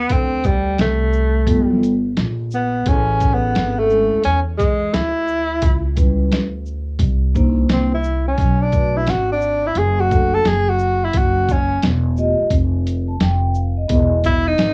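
A breathy, whispered tenor saxophone solo with scooped notes and vibrato opens this smoky, cool jazz-hop fragment at 87 BPM over a woody pizzicato upright bass, joined at 0.1 s by mellow, dark soft-mallet vibraphone chords moving from Dm7 through Amaj7 and Bm7 to Emaj7 and by a gritty, pitched-down boom bap sampler kit of thumpy kick, snare, hi-hat and shaker in swung 4/4, with plate reverb on the sax and vibraphone and cassette tape colour on the sax, vibraphone and drums of this home recording.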